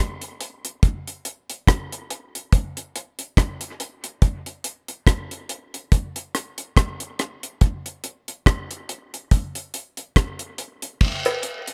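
A deep, dry reggae drum kit sits up front from 0.2 s, its dark, smooth crash cymbal, hi-hat, rim click and tight kick setting a meditative, hypnotic groove at 71 BPM with a lightly swung sixteenth feel, before a brief jawbone-type rattle and cowbell, touched with egg shaker, group handclap, small-room ambience and dub echo, appears at 11.0 s in this reverb-light piece cut from a longer performance.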